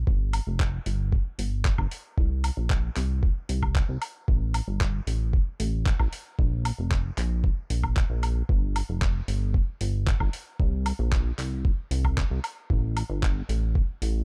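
A straight 4/4 groove at 114 BPM drives this nu-disco excerpt, a sensual, cosmic stretch cut from a longer piece that sits entirely in a drop. A compressed, tape-warm electronic kick sits up front with a thumpy, gritty punch, entering at 0.1 seconds. Just behind it, a dusty soul sampler-style kit adds handclaps, hi-hat and woodblock at a lower level from 0.3 seconds. The chorused synth bass, also up front and running from 0.0 to 14.2 seconds between F1 and C2, blends pulse, sawtooth and triangle waves with pulse-width and ring modulation. Its filter pluck and fast attack give way to sustained, glossy, mellow tones with a retro sheen. The production is dry, dark and warm.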